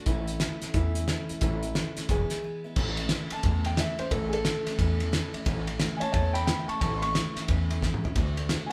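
Rockabilly with a rollicking, retro swing, this short excerpt from a longer piece has a band playing live together in one room under light reverb. A dark upright piano carries the melody with a mellow, woody, vintage tone, while a picked steel-string acoustic guitar supplies bright, full-bodied accompaniment beneath it. A pizzicato upright bass gives a thumpy, woody low end, and a cloth-damped drum kit sits up front with a fat snare, tight kick, dark cymbals and a gritty, saturated, rolled-off character. After a brief break at 2.4 seconds, the piano takes a solo from 2.8 seconds to the end, with a drum fill at 7.8 seconds leading toward a final move to D.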